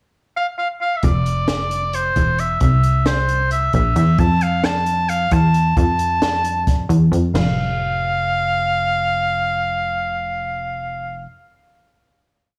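A bright, up-front oboe opens the piece at 0.4 s with a free, classical-style melody touched by light vibrato, and at 1.0 s a punchy, plucky analog bass with a funky sawtooth bite and an acoustic jazz kit join in, the kit's boomy kick, high-tuned snare, dark cymbals and toms driving an intricate 7/8 groove. This short progressive instrumental moves through F5, C7 and Fmaj7 chords before the drums drop out at 7.5 s, leaving oboe and bass to hold a final note. The whole recording sits in a small room with studio reverb and sounds blown-out and overdriven.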